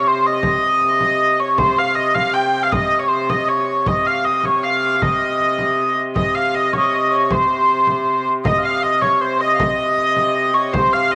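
A wet spring reverb with a 2.6-second tail colours this driving, mysterious medieval dance excerpt in C phrygian at 157 BPM in 3/4, where a rich, nasal hurdy-gurdy carries the melody up front over a distant second hurdy-gurdy droning on C3, a deep frame drum struck with hard hands joins at 0.4 s, and at 8.4 s an airy, chiffy tenor recorder in the background and a very quiet oboe with light vibrato add a second line.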